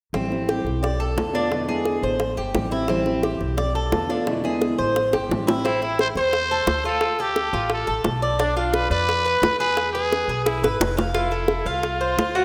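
A raspy, growling trumpet takes the melody at 5.7 seconds, bright and up front with a light vibrato, riding over this sultry Cuban son and guajira groove in A minor at 174 BPM. From the start, a metallic, picked tres spins arpeggios with its double strings ringing out prominently. A full-bodied, fingerpicked nylon-string guitar adds accompaniment until 5.7 seconds, while a woody, thumpy pizzicato upright bass anchors the low end. Tight, high-tuned bongos played with hard hands sit close and dry, with drum fills arriving at 5.1 and 10.5 seconds. The harmony moves through Am7, Bm7b5 and E7 before shifting to Am, Dm, Bdim, E and F, all bathed in a lush hall reverb within a rough home demo mix, cut from a longer piece.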